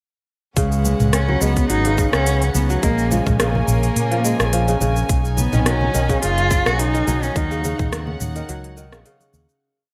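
This organic downtempo piece has a glossy 1980s-style digital sheen with light studio reverb. It moves at 106 BPM in 4/4 in Eb minor, with a gentle 16th-note swing and a hypnotic, mystical mood. From 0.6 seconds a fingerpicked kora rings out a bright 10-step arpeggio loop that drifts against the bar, echoed by digital delay. A round, amped fretless electric bass sits up front with a dotted rhythm, tube saturation and sidechain pumping. An earthy, close chamber string section holds a sustained pad with light vibrato and pumps in time, while a focused solo cello with vibrato and delay plays motif-based call phrases until 7.9 seconds. The beat pairs a tight, overdriven electronic kick with a layered kit of crisp hi-hats, shaker, low tom and rim click, both re-recorded in a large room, beneath very quiet, soft-handed congas. The harmony moves through Db7sus4, Bbm7, B69 and Ebm7, and the piece fades out from 6.6 seconds.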